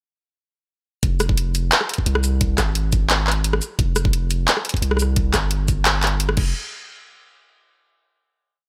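Half-time drum and bass at 174 BPM in F minor, this short, complete piece carries a tense, cinematic mood in a digital ambience. At 1.0 seconds the drop hits, and an electronic kick drum, knocking and overdriven with a small-room character, anchors a sparse half-time beat. Around it, a layered electronic kit sits up front with bright closed hats, shaker, rim clicks, claps and a crash, all given overdrive and a touch of small-room reverb. A deep 808-style bass, sine-like and mellow with a fast attack and long decay, plays chopped phrases between F1 and C2, sitting forward in the mix. The drop runs to 6.5 seconds, followed by a final hit that closes the piece at 7.9 seconds.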